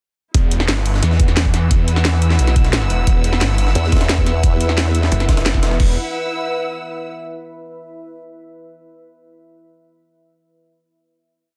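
A straight 4/4 pulse at 176 BPM drives this short, tense and aggressive piece of dark technical drum and bass, with the drop beginning at 0.3 seconds. A knocking, layered electronic kick plays a broken beat, joined by a tight technical kit with a cracking snare, bright closed hats and a crash. Beneath them, a very quiet, gritty, pitched-up looped breakbeat with edits sits in a large room. A snarling, detuned saw bass growls up front in chopped phrases, distorted and overdriven with sidechain pumping. At 3.8 seconds a formant-sweep wobble bass with chorus enters, its wobble speed changing as it answers the other bass, and from 4.0 seconds a deep, moody ambient pad with slow attack adds dark sustained chords. Veiled, muted strings bowed con sordino shift slowly throughout, pumping against the kick, and they carry the final chord from 5.8 seconds in a dense, heavily limited master with light reverb.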